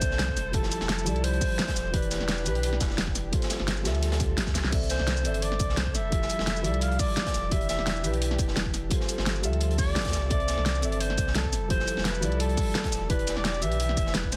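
From the first moment, an uplifting, dreamy liquid drum and bass groove at 172 BPM, with a light swing, brings in a distant, roomy alto saxophone melody with vibrato and a soft, muted upright piano, both trailed by dub echo, over a dark chamber string section bowing sustained chords in the background. Underneath, a deep, mellow sub bass with octave pairs with a punchy electronic kick, an up-front pop drum kit with fat snare, hi-hat, shaker and crash, and a gritty, saturated breakbeat kit sitting further back, its hats, snare and room high-pass filtered, with a drum fill at 4.6 seconds. The harmony cycles through Fmaj9, Em7, G9sus4 and C69 in a dense, heavily limited mix with light reverb and small room ambience, cut from a longer piece.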